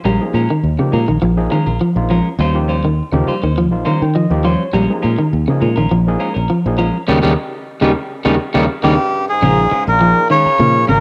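Hypnotic and defiant, this short afrobeat cut from a longer piece rides a straight 4/4 groove over a loop of minor-seventh and dominant chords, recorded at home on cassette with light reverb. A fingered electric bass sits up front with a round, foam-muted tone warmed by tube saturation, while an electric guitar at the edge of break-up plays twangy, slightly broken-up arpeggios low in its range through spring reverb. A clean, picked semi-hollow guitar adds quieter hollow-bodied stabs above it, and an overdriven tine electric piano fills out the accompaniment with a bright, barky sound through a combo amp, stepping forward with short fills. The whole band hits a run of accents from 7.1 seconds, setting up the melodica's entrance at 8.8 seconds, its reedy, breathy, nasal lead sitting up front. A growling trombone joins at 8.9 seconds on a low second line, raspy and punchy with vibrato, as the passage turns into a new section before the cut ends.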